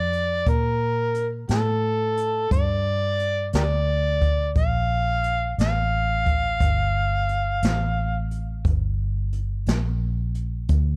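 This dry, dark-sounding recording is a short cut from a longer piece, with a smoky, soulful mood. It is a slow blues in G minor at 59 BPM in 12/8, resting on a single Gm9 chord. An overdriven, amplified harmonica leads up front with a gritty, jazz-style solo between G4 and F5, full of vibrato, tongue slaps and scooped notes, before it stops at 8.3 seconds. Beneath it, a vintage foam-muted fingered electric bass sits up front with a round, amped tone, moving between G1 and Bb2. A jazz kit played with brushes sounds distant and roomy in a small space, with hi-hat, a medium-tuned snare and a boomy kick.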